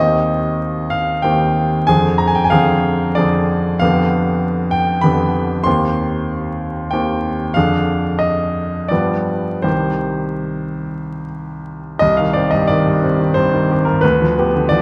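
Heard through vinyl crackle and lossy compression artefacts, with a dark production and a moderate recital-hall reverb, this short cut from a romantic classical character piece for solo piano sits in a stormy, brooding C minor, moving in a rubato 3/4 between 74 and 98 BPM. The grand piano is up front, brilliant and intimate, its long sustain ringing over audible action noise as it spans C2 to C6. The harmony circles through half-diminished, diminished and dominant seventh chords, reaching C minor at 9.7 seconds before turning to G7 at 14.0 seconds, shortly before the cut at 14.8 seconds.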